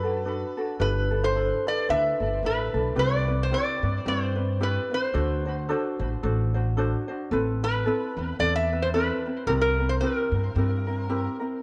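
A relaxed swing on the eighth notes carries this languid, sunny Hawaiian piece at 111 BPM in 4/4, in C major and cut from a longer work. Up front, a metal-body resonator slide guitar plays the melody with fingerpicks, its tone metallic and nasal and trailed by tape echo. A light, thumb-plucked ukulele supplies the accompaniment, while a pizzicato upright bass with steel strings lays down a dark, woody foundation. In the background, a mellow, hollow-toned kalimba rings softly as a second line until 2.7 s, just before the harmony moves from Bm7 and G69 to Cmaj7 at 3.0 s, then on through D7, Amadd9 and C7. The recording sits in a moderate recital-hall reverb and carries the worn, warbling pitch drift of old cassette tape.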